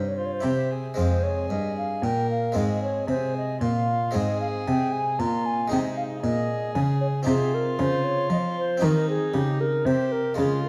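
A pure, wooden baroque flute sings the melody with vibrato over a dry, close-miked, round harpsichord and a nasal, distant gut-string cello bass, joined at 0.2 seconds by a reedy violin second line with light vibrato, in this solemn, flowing fragment of a baroque-style sonata movement in F minor, taken at 115 BPM in 3/4 and moving through F minor and A-flat toward C minor, all set in a dark production with moderate recital hall reverb.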